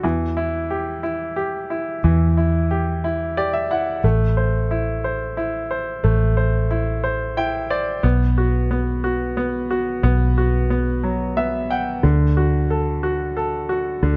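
A dark production with light studio reverb frames this dramatic, aching pop ballad in E minor, moving at a slow 60 BPM in a straight 6/8. A brilliant, polished grand piano with short sustain carries the accompaniment up front, adding fills at 3.0, 7.0 and 11.0 seconds, while a round, punchy, foam-muted vintage electric bass sits just as close beneath it. The harmony passes from Em to Am, then B5 and D, in a passage cut from a longer piece.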